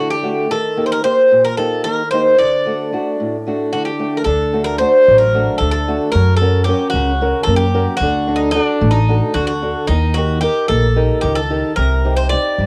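A metallic, double-strung bouzouki carries the brooding, cool melody of this Greek folk excerpt in 7/8 at 224 BPM in D phrygian dominant, over a dark, boxy fingerpicked old ladder-braced acoustic guitar, with a thumpy pizzicato upright bass entering at 4.3 seconds, all heard through a wet small room and the grain of a home cassette recording.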